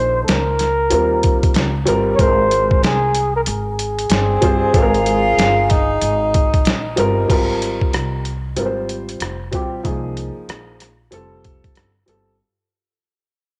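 A swung 94 BPM boom bap groove in 4/4 comes from a gritty, pitched-down sampler-style kit with a thumpy kick, driving this relaxed jazz-hop excerpt in Ab major over a dark, vintage-sounding upright piano with audible action noise and a woody pizzicato upright bass. A veiled trumpet with bucket mute carries the melody until 6.6 seconds, and a breathy tenor saxophone joins at 4.1 seconds, sitting distant and roomy through tape echo, before the piece fades out from 7.3 seconds. A moderate spring reverb and cassette tape coloring on the horns, piano and drums give this home recording an intimate character.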